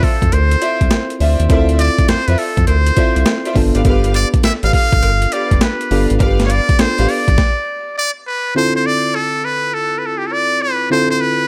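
The sound is dry and close, with little reverb, and the drums and bass sit up front in this bouncy, confident new jack swing cut from a longer R&B piece. A muted trumpet carries the melody from start to finish, its buzzy, breathy, jazz-style tone riding over a glassy, bell-like FM electric piano that accompanies through a chorus effect. A gritty, sampler-style drum kit with a thumpy kick, medium-tuned snare and hi-hat drives the swung sixteenth-note feel through overdrive, joined by a round, deep analog bass and a very quiet, metallic cowbell. Dark, lush string stabs with vibrato punctuate the groove as the harmony moves from Dm9 to G7. The band drops out in a stop at 7.4 seconds, leaving the trumpet and electric piano to carry the return to Dm9 at 8.6 seconds through to the end.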